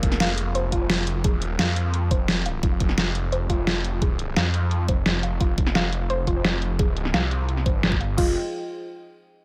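A growling, detuned saw bass sits up front and distorted in this aggressive, dark technical drum and bass excerpt. It is driven by an overdriven knocking electronic kick and a dubstep kit whose deep snare, hi-hat and crash are filtered and have a small-room character. Behind them, a soft, round pluck with chorus and digital delay pumps through arpeggios over a very quiet, moody analog pad holding sustained chords, all in light digital ambience, until the harmony shifts at 8.2 seconds.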